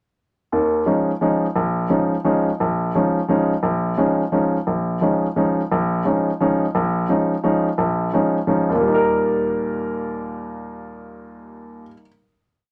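Spiritual and open, this short jazz waltz swings at 174 BPM in Eb mixolydian, with a single warm, natural baby grand piano placed up front in moderate studio ambience, playing stride bass under close voicings as it rests on an Eb9sus4 chord before resolving to Eb at 8.8 seconds.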